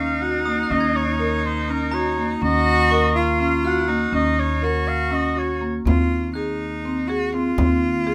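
A clear, distant oboe with light vibrato carries the melody of this restless, hypnotic chamber piece in 7/8 at 245 BPM in eighths, set in Eb dorian and moving from Ebm9 to Ab/Eb. A biting, nasal bowed cello sits up front on a second line, while woody marimba arpeggios and a dark pizzicato upright bass on Eb2 hold the ground beneath a faint, bell-like glockenspiel ringing in the background. The oboe drops out at 5.7 seconds, and a close, dry frame drum played with hard hands enters quietly at 5.9 seconds, all in a moderate studio ambience captured with detailed microphones.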